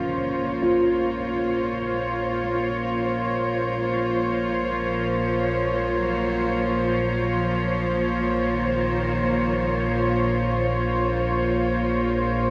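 Dark ambient drone in free time and Bb minor, ominous and cavernous, where a dark, up-front studio cello section sustains chords over a warbling, resonant analog drone with chorus, while a mellow, boxy concert grand piano plays very quiet arpeggios, a metallic bronze singing bowl rings softly, and a clear, airy solo cello with delay carries a background melody until 10.8 seconds, all steeped in huge reverb as the drone and cello fade in, a fragment of a longer piece.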